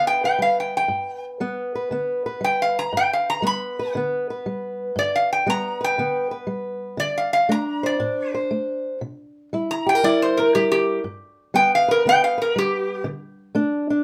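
Laid-back and rollicking, this excerpt of acoustic country blues in G mixolydian moves at 119 BPM with a strong swing on the eighth notes. A metallic, nasal resonator slide guitar, played with fingerpicks and a steel bar, carries the melody up front from the start until 13.1 seconds, over a dark, woody, boxy old ladder-braced acoustic guitar fingerpicked with old strings that accompanies through 14.0 seconds. A moderate studio reverb gives the pair some air as the chords move from G to D5, C7 and back to G.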